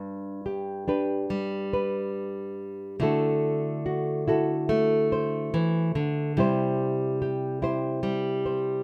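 A thumb-plucked nylon-string guitar sits up front in this hopeful solo folk excerpt, playing with a classical touch and audible finger squeak at a rubato 71 BPM in G major, moving from G to Dadd9 at 3.0 seconds and C at 6.4 seconds within a moderate studio reverb.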